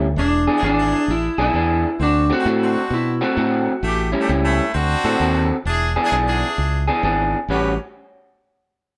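A live-in-one-room blues band with light reverb opens this short, laid-back, soulful passage cut from a longer piece, swinging along at 131 BPM in 4/4. Up front, a slightly broken-up, lo-fi electric guitar through a small old amp plays a picked riff with spring reverb, over a round, dark fingered electric bass and bright, jazz-style horn stabs with light vibrato. A dark, slightly broken-up electric slide guitar carries the melody from 0.2 to 4.1 s as the chords move through E7, D7 and A7, and the passage comes to rest on an A13 at 7.5 s.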